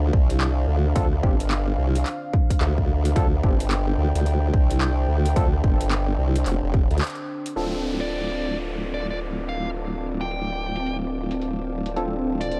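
Glitch hop at 109 BPM in D minor, this swaggering, funky excerpt rides a swung 16th-note feel over a single Dm7 chord. A wobbling, saturated formant-sweep wobble bass sits up front with a chorus sheen, beneath a deep, moody analog pad that pumps against the beat. A punchy, tape-toned electronic kick leads the drums, joined by a dubstep kit of handclaps, rim clicks and metallic, filtered hi-hats. From 1.0 seconds a barky, lightly overdriven tine electric piano adds bright stabs through a combo amp, with delay trailing behind them. After a brief break and a band accent at 7.0 seconds, a filter sweep moves over the drums while a downlifter falls. A dark, overdriven lead guitar picks out a gritty melody with delay from 8.0 seconds, and a blurred, evolving granular cloud pad drifts in at 9.0 seconds, all in a dry sound.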